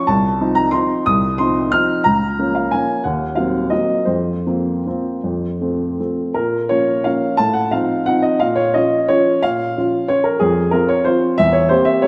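A woody upright piano carries this brief classical waltz entirely on its own, sitting up front with an open tone and long, ringing sustain across a range from low C2 to high F6. The mood is bittersweet and wistful, the triple-metre lilt loosened by a flexible, rubato feel. The opening passage moves through shaded harmonies such as F7/C, Bbm/Db and Cm7b5/Eb before settling on a suspended F chord that resolves to F. At 6.4 seconds a new section begins on Bbm, passing through F7/A and Fm and closing on C7/E. A moderate scoring-stage reverb gives the piano a sense of space, and the recording is cut from a longer piece.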